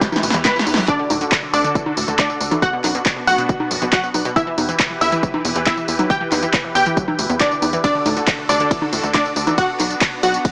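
Uplifting trance at 138 BPM in E minor, this bittersweet, soaring passage is cut from a longer piece and moves through Em, D and Bm chords. A lush, detuned unison pluck carries the melody, shadowed by a dark, mellow grand piano playing a second line high above it, both pumping with the kick and trailing dub echo. Underneath, a filtered supersaw swell holds evolving sustained chords while a round analog pluck spins arpeggios with chorus, gritty 12-bit sampler texture and dub echo, all set in the background. A punchy, layered electronic kick and an overdriven analog drum machine of congas, handclaps, hi-hat, ride, snare and tambourine sit up front, opening with a drum fill as a reverse cymbal rises in the background from 0.2 to 0.9 seconds. A tight, nasal sequencer bass enters at 0.2 seconds and drives the low end, and the whole mix has light reverb and a small-speaker character.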